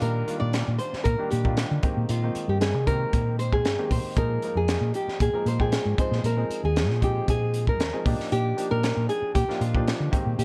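A dark, softly reverberant production frames this short excerpt of electric jazz fusion, cut from a longer piece and moving at 116 BPM in a straight 4/4. The mood is soaring and slick, with a fingerpicked flamenco guitar carrying the melody between F4 and D5, its acoustic tone given a slapback echo and placed up front. Beneath it, a hollow-body short-scale electric bass, played with the fingers, sounds round and amped as it holds the low end between Eb2 and D3. A grand piano supplies intimate, boxy accompaniment across a broad span from Eb3 to G5, its action noise audible. The acoustic drum kit brings a high-tuned snare, punchy kick and hi-hat, saturated and gritty in a small, pumping room. All four parts play throughout the 10.4 seconds over a progression that moves from Ebmaj9/Bb through Abmaj9, Bb7sus4 and Fm7 before returning to Ebmaj9/Bb.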